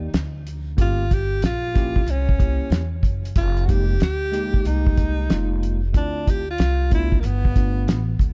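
A lazy swing on the sixteenths drives this cool, mellow jazz-hop clip cut from a longer piece, anchored by a cloth-damped, thuddy drum kit with a fat snare, tight kick and rolled-off top sitting up front beside a woody, plucked upright bass. A clean tine electric piano supplies extended chords underneath, opening on a rootless voicing, while from 0.8 seconds a breathy alto saxophone carries the melody in a close-miked jazz style, with vibrato, subtone and scooped notes trailing into tape echo. The production is dark and warm, wrapped in a studio ambience.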